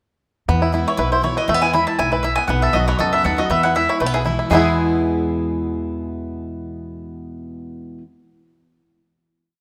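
At 0.5 seconds a twangy, percussive banjo rolls over bright, full-bodied guitar strumming with bass runs and woody two-beat upright bass in E major at a driving 239 BPM, before the mellow mandolin enters at 0.9 seconds with a running fiddle tune, giving this short, joyful bluegrass piece a rough home-demo sound in a lush hall reverb that rings on through a final chord from 4.5 seconds.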